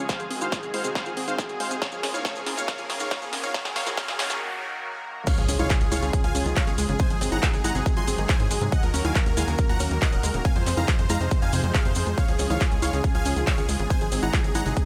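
This euphoric uplifting trance excerpt opens on a build-up, with a bright, detuned supersaw lead playing the melody over a lush, slow-attack pad and a tight, driving arpeggio synth under a filter sweep, all pumping to the sidechain, while a punchy layered kick, an analog drum machine of congas, handclaps, hi-hat, snare and crash cymbal, and grainy maracas run a drum fill. A very quiet riser and noise sweep lead through a short break at 4.4 seconds into the drop at 5.3 seconds, where an impact hits and a nasal, plucky sequencer bass enters to drive the chords onward. The mix sits in light digital ambience, with the kick up front and the delayed supersaw melody soaring high above the background layers.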